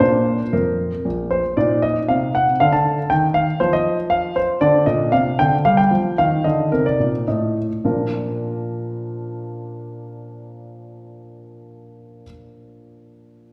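A solo concert grand piano with an intimate, natural tone, deep bass and audible action noise sits up front in a wet recital hall heard from further back, playing an elegant, playful classical-period sonatina fragment in Bb major and 3/4 at 102-120 BPM that slows down from 3.9 to 7.8 seconds before settling back on Bb.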